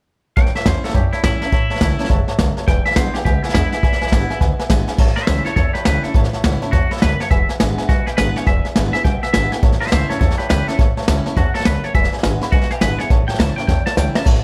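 Rowdy and upbeat, this swung rockabilly clip finds a clean, twangy electric guitar carrying the melody through a lush chorus and analog delay, while a picked steel-string acoustic guitar sits bright and full-bodied in the background with a touch of finger squeak. A woody upright piano with long sustain adds accompaniment and a short fill at 2.2 seconds, and a pizzicato upright bass keeps the low end over a dark, up-front brush drum kit with a punchy kick and a rolled-off top. The progression moves between A and E7 in a small room, and a drum fill at 13.7 seconds closes this cut from a longer piece.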